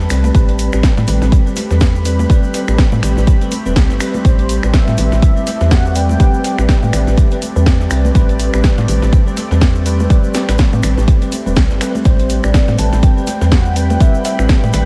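A smooth, deep house excerpt opens on a dark, moody pad with sidechain pumping, bell-like electric piano stabs trailing diffuse delay, a woody, round FM bass, and a gritty sampler-style hi-hat and snare and a grainy egg shaker in the background. These are joined by a punchy, up-front electronic kick, a house kit's cracking snare, snaps and hats, and hard-hand congas that ring close and dry, all over vinyl crackle. A velvety, chorused synth lead with tremolo enters at 4.2 seconds and returns at 12.1 seconds, and a silky string machine holds a high note in the background from 12.5 seconds.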